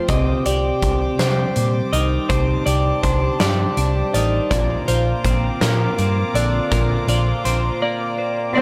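A slow 6/8 pulse at 54 BPM in dotted quarters, played straight, carries this cinematic, cathartic post-rock passage, cut from a longer piece, as it moves from Cmadd9 to Bbadd9 at 4.5 seconds. A huge arena drum kit with a fat snare, punchy kick and hi-hat booms in a big room beneath a dark, round, up-front hollow-body bass, while two clean, twangy twelve-string electric guitars spin compressed arpeggios through analog delay. A close, earthy chamber string section holds sustained chords above, and a distant, floating solo cello played sul tasto touches a single soft-attack note at 8.5 seconds, all within light studio reverb.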